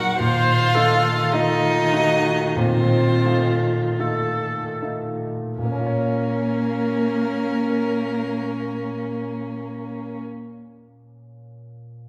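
Melancholic and solemn, this slow romantic movement for piano quintet unfolds with rubato and slows over its first 5.6 seconds, as one violin carries the melody with light vibrato, soft attacks and a smooth top, bowed sul tasto. A second, woody violin and a close cello shape the second line, while a viola with an airy bow and a dark, mellow grand piano with long sustain sit up front in the accompaniment. The strings stop at 10.2 seconds, leaving the piano alone until 12.1 seconds in a reverberant recital hall, a fragment cut from a longer piece.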